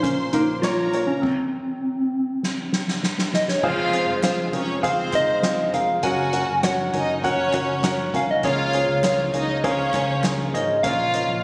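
Captured on a phone in the room with light reverb and compression, this anthemic piano-driven pop excerpt sets a round, gentle synth lead carrying the melody over a smooth, bowed violin section, a dark, woody upright piano up front, a very quiet, lightly overdriven tonewheel organ with key click and slow rotary, a foam-muted, punchy electric bass, a soft-mallet drum kit with a fat snare and boomy kick, and crisp, very quiet handclaps, with a stop at 1.2 s and a drum fill from 2.4 s.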